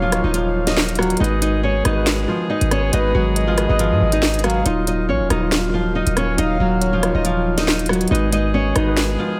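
Drill-style hip hop in Eb minor, this short, ominous excerpt moves at 139 BPM with a half-time feel, its menace carried by a dark loop of Ebmadd9 and Abm7 chords. A fingerpicked nylon-string guitar takes the melody up front, its classical, acoustic tone softened by a low-pass filter, while a breathy, flute-like synth lead with chorus, delay and vibrato adds a soft second line until 7.6 seconds. Beneath them, a worn, slightly out-of-tune tine electric piano, lightly overdriven and filtered as if through built-in speakers, supplies accompaniment, and a close-miked woodwind section with vibrato holds sustained chords in the background. A punchy, heavy 808-style bass with a fast attack and decaying tail sits up front alongside an electronic drill kit of sharp snare, crisp hi-hats, rim clicks and handclaps, re-recorded in a large room. A barely audible downlifter opens the first 1.2 seconds, and the overall mix stays dry, with little reverb.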